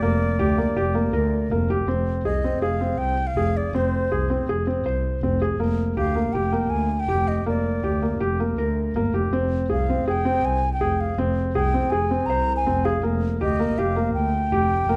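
This excerpt of contemporary chamber music in an uneven 5/4 meter opens with a bright, airy baroque flute with a woody, straight tone carrying the melody over felt-muted upright piano arpeggios and a bowed double bass, all three sounding together from the start at a brisk 161 BPM in F dorian. The mood is pensive yet urgent, with the intimate, mellow piano and the expressive bass, its vibrato and portamento gliding beneath, alternating between Gm/F and Fm harmonies. A moderate recital hall reverb and dark production frame the crisp flute attacks against the muted piano and the soft-attacked bass.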